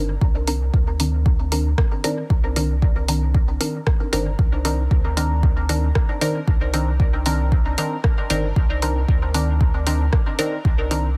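Muted, mellow dub chord stabs on a Cm9 drift over a round, dark analog bass from the opening of this hazy, meditative dub techno passage in C minor at 115 BPM with a slight 16th-note swing, the up-front stabs colored by chorus, phaser, cassette tape and dub echo, while sidechain pumping breathes through both stabs and bass, before an overdriven deep kick arrives up front at 0.2 seconds and an overdriven deep house kit of hi-hat and rim click with dub echo joins at 0.5 seconds, the whole set in digital ambience under a dense, heavily limited modern master.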